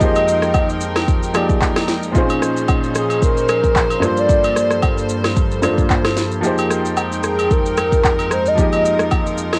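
A light-reverb home cassette sound frames this deep, late-night amapiano excerpt in F dorian at 112 BPM with a 16th-note swing, where a hollow, woody, clarinet-like synth lead with chorus and analog delay carries the melody over a worn grand piano, soft-attack floating strings, an afro-pop kit with a deep kick and sharp snare (the kick dropping out from 6.4 to 7.5 seconds), and agogo bells and woodblock entering at 0.2 seconds, all moving through Fm11, Bbm11 and Gm11.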